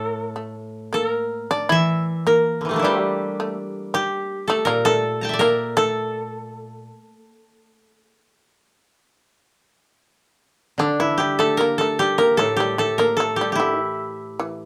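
A small, reverberant room frames this calm, austere stretch of Japanese chamber music, cut from a longer piece and moving at a rubato 70-84 BPM in 4/4 in A in the sen scale, where a woody, fingerpicked koto carries the melody up front, a bright, buzzing, plectrum-plucked fretless shamisen plays a percussive second line, and a second koto adds a low, dry accompaniment throughout as the music moves into a new section at 10.8 seconds.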